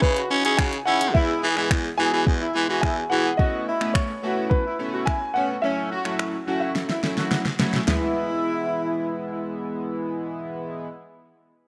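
A raspy, gritty baritone saxophone opens this short excerpt of upbeat, summery dance-pop, carrying the bass line with vibrato and an edgy, up-front presence before it drops out at 3.3 seconds. Underneath, a glossy, retro polysynth pulses with sidechain pumping, sustaining chords built from sawtooth, pulse and triangle tones with a sub octave and a filter sweep. A concert grand piano with a deep, short-sustained tone plays the melody alongside a tight horn section that adds vibrato and delay. The smooth R&B drum kit, electronic and produced, sets a straight 107 BPM groove in 4/4 with finger snaps, a soft kick, a fat snare, hi-hat and toms, all washed in gated reverb, and it plays a fill from 6.8 seconds. The harmony moves through C#madd9, E, Aadd9 and F#m7 in E major, settling back on E as a new section begins at 7.9 seconds. A lush hall reverb and a bright, 1980s-style digital sheen give the whole piece a polished glow.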